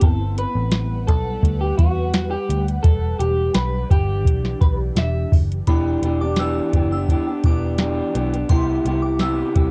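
A soft vintage rhythm box sets a straight, unhurried 4/4 pulse, its deep kick, crisp snare and metallic hats sitting dry and up front in this mellow, wistful slice of indie and bedroom pop. Beside it, a muted picked electric bass gives a dark, round, foam-muted low end, while an electric guitar through a small old amp plays bright, twangy, slightly broken-up accompaniment with subtle chorus and vibrato, taking a clean solo turn through the first 5.7 seconds. Over that opening stretch an ethereal, airy pad holds detuned sawtooth and triangle chords with a slow attack and long release, softened by ensemble chorus, phaser and its own reverb. At 5.7 seconds the pad gives way to a glassy FM synth bell in the background, its crystalline, fast-attack, decaying tones dressed in phaser, analog chorus and tape echo. The harmony drifts from Gmaj7 to Em7 and later Cmaj7, and the whole cut carries the close, dry character of a home cassette recording.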